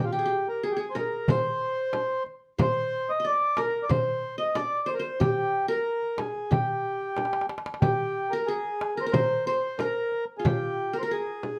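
Melancholic and soulful, this Arabic maqam ensemble passage moves at 92 BPM in a straight 4/4, with a reedy, full-toned accordion carrying the melody up front while a bright-edged, plectrum-plucked qanun with triple strings plays a second line alongside it. A crisp, metal-shelled darbuka enters at 0.8 seconds and a small, bright frame drum played with soft hands follows at 1.0 seconds, both heard close and dry, with a drum fill arriving at 7.2 seconds. A moderate studio reverb gives the ensemble a gentle sense of space in this short cut from a longer piece.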